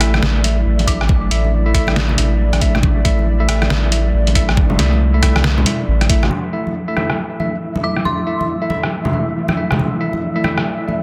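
A deep, round dub sub bass sits up front with a knocking, layered electronic kick, anchoring this brooding deep dubstep excerpt at 138 BPM with a swung, half-time feel until the bass drops out at 6.3 s. A clean tine electric piano plays echoing stabs over a moody, detuned analog pad with chorus, while a muffled, pitched-down sampler-style trip hop kit of hi-hat, rim click and snare and distant, ringing congas with dub echo fill out the rhythm. An eerie, inharmonic synth bell appears briefly with tremolo and echo, and an airy, wind-like tuned noise texture drifts in at 7.3 s, set in light reverb and a dense, heavily limited master.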